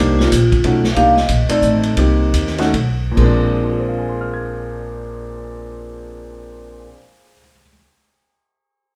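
Heard from further back in a reverberant club, this short cut from a longer small-group jazz piece in Bb mixolydian swings in 3/4 at 131-187 BPM, with a sophisticated, warm mood. Ringing, metallic vibraphone carries the melody over an intimate grand piano with audible action noise and a woody, thumpy pizzicato upright bass sitting up front, while a distant big-band drum kit with dark cymbals and a boomy kick plays until 3.3 s. The tempo slows from 1.0 to 3.2 s over chords circling Cm7, then a break in the harmony gives way to Bb7.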